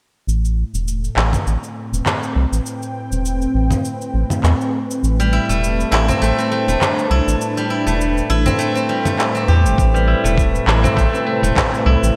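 A mellow, detuned sawtooth pad holds an Am7 chord over a deep, round square-and-sine bass, the pad and bass pumping together, beside an overdriven electronic bed of shaker, handclaps and congas in this mystical, meditative organic downtempo excerpt at 101 BPM with a 16th-note swing. At 5.2 seconds a bright, silvery steel-string zither enters up front with fingerpicked arpeggios through a low-pass filter and digital delay. A gritty, thumpy electronic kick joins at 9.8 seconds, and the whole is bathed in lush hall reverb with a bright 1980s-style digital sheen.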